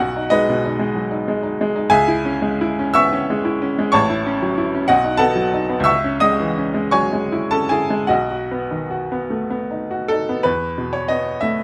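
In a rubato 6/8 lilt at roughly 49-66 BPM counted in dotted quarters, this lyrical, warm romantic character piece for solo piano, cut from a longer work, features a bright, woody upright piano with short sustain placed up front, ranging from A1 to E6 as it moves from G#m/B through C#m, F#m7/A, B7 and B before a new section opens at 10.5 s on E5, all tuned to A4 = 441 Hz and heard with light reverb and some lossy compression artefacts.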